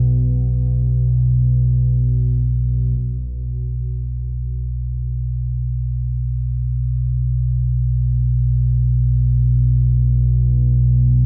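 Cavernous and ominous, this ambient passage in free time is cut from a longer piece and carried entirely by a deep, rumbling drone that sits up front from 0.0 to 11.3 seconds, moving between B1 and B2. Its detuned triangle and sawtooth tones warble with a vintage character, rising slowly into long sustained notes with a lingering release, coloured by their own built-in reverb and tape echo. The overall production is warm and shadowy in a close, dry room, with a new section beginning at 3.0 seconds.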